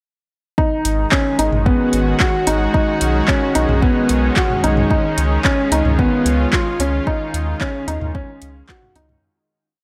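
A four-on-the-floor electronic kick at 111 BPM in straight 4/4 drives this short, hypnotic and intimate piece of piano and strings electronica in G# dorian, arriving at 0.6 seconds straight into the drop. A deep house kit of handclaps, metallic closed hats and low toms adds a restrained pulse, and both it and the deep, up-front kick are overdriven and re-recorded in a large room. A felt-muted upright piano plays a soft, mellow ostinato riff through delay, while a round, dark analog bass with tube saturation and sidechain pumping plays an off-beat line with a filter sweep. Behind them, a lush, detuned sawtooth unison pad with chorus and its own sidechain pumping holds slowly shifting chords, moving from G#m7 through B and C#7 to D#9sus4. A light reverb surrounds the mix, and a fade-out begins at 6.3 seconds and carries the piece to its close at 9.2 seconds.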